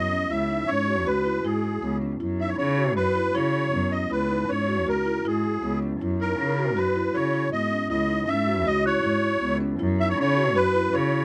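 A reedy musette accordion, shimmering in its wet tuning, carries the melody up front from the start, over woody, rounded marimba arpeggios played with soft mallets and a dark, veiled muted cello bowing the bass line with vibrato and portamento. This restless, playful contemporary chamber piece moves at 158 BPM in an uneven 5/4, circling between C#m7 and F#7 harmonies. At 6.4 seconds a delicate, slightly out-of-tune celesta adds a sweet bell-like texture in the background until 9.7 seconds, all captured by close, detailed microphones with little reverb in this short cut from a longer work.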